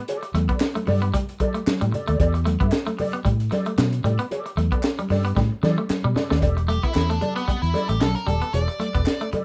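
A bright, clean semi-hollow electric guitar opens this sly funk excerpt with a picked riff in E minor over an Em7 chord, and a mellow, dark electric guitar with wah joins almost at once in fingered accompaniment. Crunchy breakbeat drums sit up front at 114 BPM with a 16th-note swing, their gritty, saturated sound marked by a punchy kick, a high-tuned snare and a rolled-off top. A vintage foam-muted fingered bass, round and amped, carries the low end prominently from 0.3 seconds, while ringing, softly played congas tap away in the background and crisp group handclaps add dry, close percussion. A drum fill at 5.4 seconds leads into a new section where, from 6.7 seconds, a nasal lead guitar with a parked wah and overdrive takes a short solo. The whole has the loose feel of a rough home demo, set in a moderate studio reverb.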